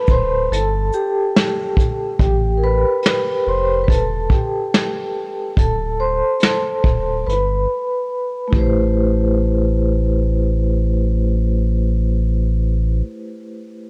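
Hazy and melancholic, this lo-fi hip hop fragment, cut from a longer piece, features a ringing, metallic vibraphone solo with soft mallets and medium motor vibrato, heard through a low-pass filter, over a deep, round sine sub bass and an up-front, swung brushed drum kit with a tight kick and rolled-off top that stops at 8.8 seconds, the whole mix carrying small room ambience and cassette tape character.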